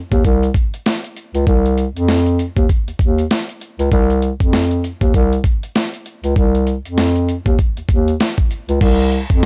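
Moody and tough, this boom-bap hip-hop excerpt sits at 98 BPM in C minor with a 16th-note swing, cut from a longer piece. A dusty, sampler-style drum kit with a thumpy kick, medium-tuned snare, hi-hat and crash cymbal hits up front, compressed and overdriven, while a mellow bass clarinet with a smooth top carries the low line in a classical style from 0.1 to 9.5 seconds. The sound is dry, with little reverb, and gritty, a hardware recording carrying transformer saturation.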